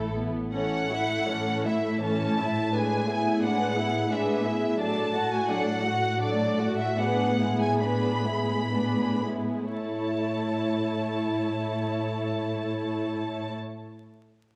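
A lyrical, serene slow romantic movement for string orchestra opens with all four sections sounding together from the start, a short excerpt cut from a longer piece in a flexible, rubato triple metre. The violin section carries the melody with a lush, up-front tone, while a second violin section beneath it adds a darker, woody line with a soft attack. The violas supply a smooth, even accompaniment in the middle register, and the cellos hold the bass on a low A, their vibrato and portamento giving the foundation an expressive, up-front presence. The harmony moves gently over that held bass through A, E7 and D chords, and the music slows down between 3.8 and 9.7 seconds before settling back on A as a new section begins at 9.7 seconds. A wet recital hall reverb surrounds the strings, and a layer of vinyl crackle lends the sound an aged, intimate patina.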